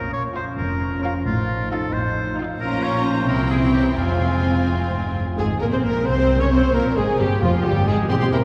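A rich, expressive violin section carries the melody of this restless, urgent, quick classical-period orchestral movement in F minor at 88 BPM in 6/8, joined by a smooth, even second violin line, focused violas, lush cellos and close double basses, alongside mellow, distant French horn chords and a bright, punchy oboe heard until 5.1 s; timpani are barely audible at 4.0 s, and from 5.4 s a very quiet, airy flute group and a clear trumpet playing stabs enter, all set back in a cathedral reverb.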